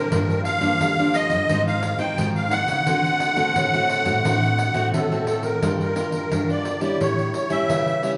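A reedy musette accordion carries the melody up front in this nostalgic, lively cut from a longer samba and choro piece in G minor, its shimmering double-reed tuning heard through a boxy small-room tone. Two fingerpicked nylon-string guitars support it at 87 BPM in a straight 4/4: one picks out the accompaniment with a full-bodied classical sound, while the other plays the bass line with fresh strings and audible finger squeak. A jingly pandeiro, played with hard hands, joins at 0.1 seconds and keeps the groove moving. The harmony opens on Gm7, Ab6 and D7 before a new section at 5.6 seconds returns to Gm7 and turns toward A7. The whole band plays live in one room, bathed in a generous large-studio reverb with a mellow, rounded top end.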